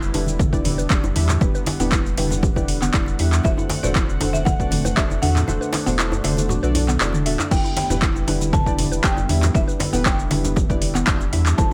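Warm and spiritual, this afro house excerpt in E minor moves at 118 BPM over Em7 and D7/E chords, with a round sine sub bass, an overdriven punchy kick that drops out from 5.5 to 7.5 seconds, a metallic-hatted afro-pop kit with claps, shaker and toms, ringing low congas, a very quiet djembe, a woody FM pluck playing arpeggios, dark warbling chord stabs with tape echo, a smooth detuned sawtooth pad, and a buzzing marimba melody entering at 3.4 seconds.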